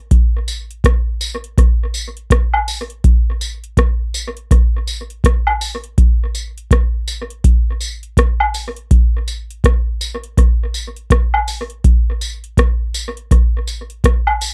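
A reggae groove at 82 BPM in 4/4 rolls along with a 61% swing on the 16th notes, starting almost at once from a booming analog drum machine at 0.1 seconds. Its deep kick, metallic hi-hat and rim click are overdriven and sit up front, with the character of a machine re-recorded in a small room. At 0.5 seconds a hand-percussion layer joins, tambourine and woodblock along with egg shaker and group handclap, sounding acoustic, vintage and band-limited, also placed close and forward but lower in the mix than the drums. The mood is meditative and hypnotic, holding to a single section for the full 14.5 seconds. The sound is dry and close, in the manner of a 1970s studio recording with little reverb, and the clip is cut from a longer piece.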